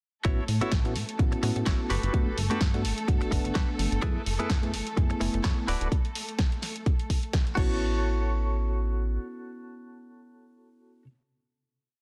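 Punchy, four-on-the-floor electronic kick drives this short, sunny filtered disco house piece at 127 BPM in A mixolydian, joined by a house kit with a punchy snare, bright hats and crash, a dark, funky, octave-jumping analog bass, a reedy, worn electric piano with overdrive and phaser, a twangy clean guitar riff with tremolo, and distant, lush bowed strings with 12-bit sampler grit, all moving through A6, Gmaj9, F#m11 and D5 before the drums stop at 7.7 seconds and the piano, guitar and bass carry the final hit from 7.8 seconds.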